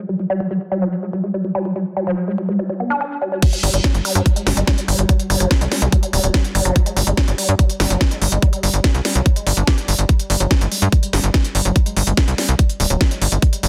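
A woody, wave-folded pluck opens this psychedelic trance excerpt alone, its mellow riff treated with chorus, tape echo and sidechain pumping while a filter sweep moves across the arpeggio through the first 3.4 seconds. At 3.4 seconds the drop arrives at 144 BPM in straight 4/4, bringing a tight, up-front layered kick and a techno kit of cracking snare, smooth hi-hats and crash, tape-tinged and re-recorded in a small room, with a punchy, nasal sequencer bass of sawtooth and square wave joining at 3.6 seconds. The intense, driving mix sits in digital ambience under a dense, heavily limited modern master.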